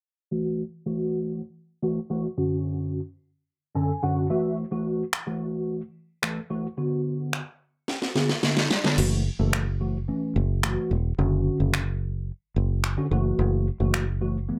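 Bittersweet yet energetic, this dance-pop excerpt moves at 109 BPM in a straight 4/4 and sits in F# minor, cut from a longer piece. A mellow tine electric piano opens at 0.3 seconds, clean and up front with an ensemble chorus and low-pass filter, and a filter sweep runs across it through the opening stretch, with a short piano fill along the way. The house drum kit arrives at 5.1 seconds, layered and electronic with a cracking snare, finger snaps and crash cymbal carrying a tape-warm, small-room character, and a drum fill leads into the second section. At 9.0 seconds the fingered electric bass joins, punchy and direct with a foam-muted tone, holding low between E1 and F#1. The harmony circles F#m7, Dmaj7/F# and Bm under light reverb, keeping all three parts close and forward.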